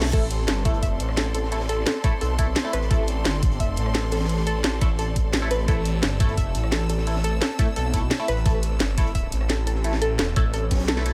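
Aggressive and dark, this excerpt of technical drum and bass drives along at 173 BPM in a straight 4/4, resting on A minor throughout. An up-front, knocking electronic kick anchors a layered drum and bass kit with a cracking snare, bright hats, rim clicks, toms and crash, while a very quiet, gritty breakbeat kit with a high-tuned snare and rolled-off top sits underneath. The phased, detuned saw bass is thick, swirling and up front, overdriven and saturated, pumping against the kick down in the low register. Above it, a nasal, band-passed chord stab with ring modulation and phaser flickers through digital delay, and a warbling, lo-fi pluck traces arpeggios with chorus and delay. A clear, lush symphonic string section bowed with vibrato adds intense, close texture that also pumps with the kick, and the dry mix closes on a drum fill and band accent at 10.9 seconds.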